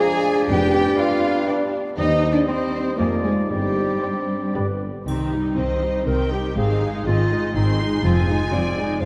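Quirky and magical, this playful, whimsical film cue moves at 120 BPM in a straight 3/4 and sits in C minor, cut from a longer piece. A distant, vibrato-laden violin section carries the melody up high, while a second, lush violin section sits in the background on a supporting line alongside a soft-attack solo clarinet. In the opening phrase, a very quiet, airy flute ensemble, a roomy oboe and a mellow bassoon add woodwind colour, and a tight French horn section holds sustained chords. These woodwinds and horns fall away around 4.7 s, and a distant tuba anchoring the low end drops out at 5.0 s. This leaves the clarinet and the strings: a close, smooth viola section on accompaniment and an expressive cello section with portamento over a bowed double bass section. The harmony moves from G7/F through Cm/Eb and Gsus4 into Cm, Ab and Fm7, a small-room triangle adds a faint glint at 5.1 s, and a dark production bathes the whole ensemble in a 2.5-second concert hall reverb.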